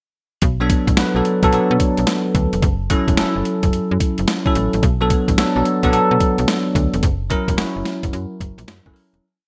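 A gritty, pitched-down boom bap drum kit with a thumpy kick, high-tuned snare and hi-hat opens this bouncy, confident new jack swing piece at 0.4 s, playing a hard-swung drum-machine beat with gated reverb alongside a snappy, metallic FM slap bass that rides a swung synth-funk line with muted ghost notes. A bell-like tine electric piano, clean and up front with analog chorus, joins at 0.6 s with syncopated drop2 chord stabs and grace notes over Bm7 and F#m7, landing on F#7. The bright 1980s-style digital production sits in a moderate plate reverb, and the whole piece fades out from 7.0 to 9.2 s.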